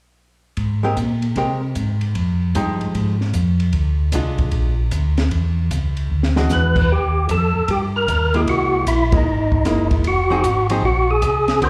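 A percussive tonewheel organ takes the melody at 6.5 seconds, its fat, lightly overdriven tone marked by key click, third-harmonic percussion, chorus vibrato, slapback echo and a slow rotary speaker, sitting up front in this soulful, swinging soul jazz organ trio excerpt in Eb major at 152 BPM with a firm eighth-note swing. Beneath it from the start, a mellow tonewheel organ carries the bass line, round and dark with clean chorus vibrato and its own slow rotary spin. A compact cocktail drum kit, acoustic and smooth with a high-tuned snare, punchy kick and rolled-off top, works through hi-hat, ride and crash, and a drum fill comes just before the melody arrives. A hollow-body archtop guitar, picked, compressed and clean with a slapback echo, comps on chords moving from Abmaj9 through Fm9, Bb7 and E9, then Eb, C7alt and Fm7. The band hits an accent at 9.1 seconds, all heard as a live gig through the venue's PA with club reverb and a faint mains hum.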